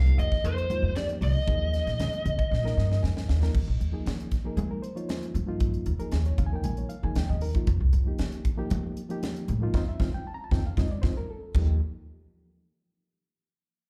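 A woody, thumpy pizzicato upright bass sits up front in this funky, bright electric jazz fusion excerpt at 116 BPM in Eb major. It is joined by a crisp fusion drum kit with a high-tuned snare and punchy kick, and thin-skinned congas in the background. An overdriven, lo-fi lead guitar through a small cranked amp carries the melody with slapback and tape echo until 3.0 s, while a reedy, worn, slightly out-of-tune electric piano plays accompaniment with slapback echo and adds a fill at 2.8 s. The sound is that of a live gig heard through the venue's PA with club reverb, and a band accent from 9.7 s and a drum fill from 10.8 s lead into a closing Eb chord.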